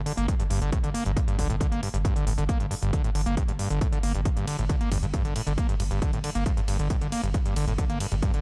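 Set to a straight 4/4 pulse, this relentless, dark slice of driving peak-time techno layers a heavy electronic kick with smooth, tape-tinged hi-hats and ride cymbal that pump against the sidechain, beneath a deep, thick, saturated sine sub bass and an up-front, squelchy, screaming sawtooth acid line whose resonant filter sweep, distortion, chorus and delay give it an aggressive bite, with little reverb across the mix.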